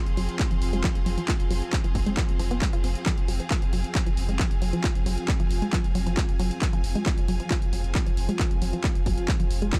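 Distant, bowed symphonic strings open this industrial slice of driving peak-time techno at 135 BPM in F minor. Almost at once they are joined by a moody, detuned sawtooth pad drone, a round sine sub bass on F1, and a lush, punchy unison pluck riff with delay tucked in the background, while a filter sweep runs on the synth arpeggio throughout. Handclaps and hi-hat from a distorted techno kit arrive alongside, and at 0.4 s a heavy, overdriven electronic kick lands up front; sidechain pumping breathes through the pad, strings, bass and pluck over a steady Fm chord in a dark, warm production.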